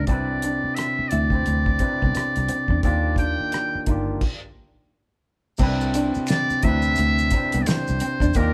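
Over a swung sixteenth-note groove, this soulful neo-soul R&B piece features a breathy, buzzy trumpet with a metal mute up front on the melody, a gritty overdriven tine electric piano, a clean hollow-body jazz guitar in the background, a round foam-muted electric bass, and a dry cloth-damped drum kit with a fat snare and dark cymbals, all in a moderate stone room; the band hits a stop at 4.2 seconds before maracas and finger snaps join softly at 5.6 seconds as the Cmaj9 chord returns.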